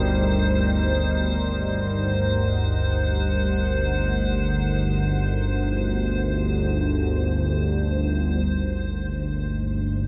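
A huge, cavernous reverb surrounds this ominous dark ambient drone in free time, cut from a longer piece. An up-front analog drone, detuned and warbling, holds the low end beneath a deep, moody pad sustaining chords with shimmer reverb, while an icy glass pad adds a crystalline, airy shimmer on a single high note. The glass pad stops at 8.5 seconds, just after the harmony shifts from Eb/G to Gm at 8.4 seconds, leaving the drone and deep pad to carry on to the end.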